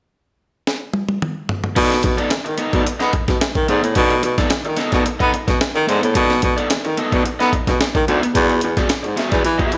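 A compressed, sampler-style breakbeat kit opens this funky, energetic excerpt with a drum fill at 0.7 seconds, its thumpy kick, high-tuned snare, toms, hi-hat and crash sitting gritty and up front. At 1.8 seconds the groove settles into a straight 4/4 at 109 BPM in B mixolydian, as a breathy baritone saxophone takes the bass role. The sax is bright yet whispered and intimate, with a soft attack and vibrato in a pop style, and it sits forward in the mix. Alongside it, a raw garage electric guitar adds picked, overdriven accompaniment with a warm edge. The harmony rests on a B7#9 chord before moving to E9 at 8.4 seconds. Light reverb gives the funk fragment a touch of space as it cuts off.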